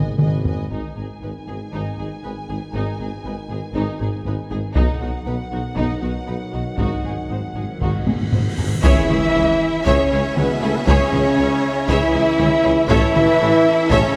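Epic orchestral film score in a dark, relentless mood at 118 BPM, opening in G# minor with hard-stick taiko drums driving the pulse as bowed violins carry a lush, vibrato melody over a second violin line, violas, woody cellos, clear double basses, a mellow tuba, distant roomy French horns and trombones sustaining dark chords, all in a moderate scoring-stage reverb. Close, dry timpani with hard mallets fill from 6.8 seconds as a huge cymbal swell builds into an impact at 8.8 seconds, where the music shifts to C# minor and an airy flute section and a soft-attack string section join.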